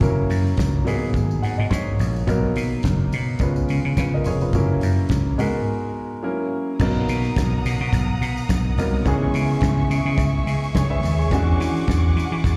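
A celebratory, glamorous disco groove at 106 BPM in B major opens with an up-front growly slap bass, an intimate grand piano with audible action noise and slapback echo that adds a fill at 1.1 seconds, a damped 70s kit with a fat snare and dark cymbals, and a jingly tambourine in the background, all heard as a live gig through the venue's PA with recital-hall reverb, until a break at 5.7 seconds gives way to focused, vibrato-rich bowed strings holding chords from 6.8 seconds in this excerpt from a longer piece.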